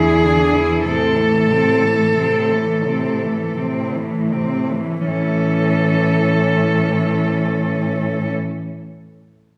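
A clear, focused solo cello carries the melody up front with vibrato, its line hovering near the top of a solemn, elegiac classical passage for cello ensemble in A minor, cut from a longer piece and moving in a rubato 3/4 at 38-51 BPM that slows through the first 5.1 seconds. Beneath it, a rich bowed cello sings a second line, a warm cello adds expressive accompaniment with soft attacks and portamento, and a distant bass cello anchors the low end, all with vibrato. The harmony moves from E7 to A minor and brightens to A major at 5.1 seconds, all bathed in the lingering reverb of a church or concert hall.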